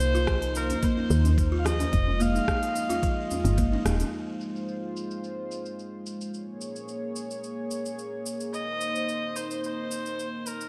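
A bright, nasal kamancheh carries the melody in this meditative organic downtempo excerpt at 109 BPM, its bowed line touched with light vibrato, portamento and a digital delay, and it returns at 8.5 seconds after falling away. Beneath it, a smooth, detuned analog pad holds sustained chords throughout, thickened by chorus and breathing with sidechain pumping as the harmony moves from Cm7 through Fm7, Ab6 and Bbm7 back to Cm7. The opening stretch is the busiest: a woody, round FM bass sits up front with its own pumping, a buzzing kalimba rings out mellow fingertip-plucked arpeggios through delay, a gritty, thumpy electronic kick thuds beneath, and a deep djembe played with soft hands stays in the background, all dropping out around a band accent at 3.9 seconds. An overdriven electronic kit of cabasa, crisp hi-hat and rim click runs the full length, filtered and re-recorded in a large room. 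The whole sits in a moderate echo chamber reverb, giving a dark, warm production with a straight 4/4 feel.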